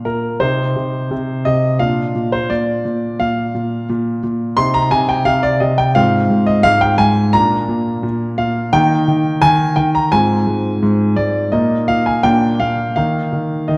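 In a straight 4/4 at 86 BPM, this short excerpt from a classical-period piano sonatina has a playful, cheerful character, its harmony wandering from C minor through B-flat and F minor before settling on E-flat. A single clear grand piano plays alone from 0.0 to 13.8 seconds, spanning Ab2 to C6, sitting up front and intimate with audible action noise and a natural sound. The production is dark, and a wet recital hall reverb with a 1.6-second decay surrounds the instrument.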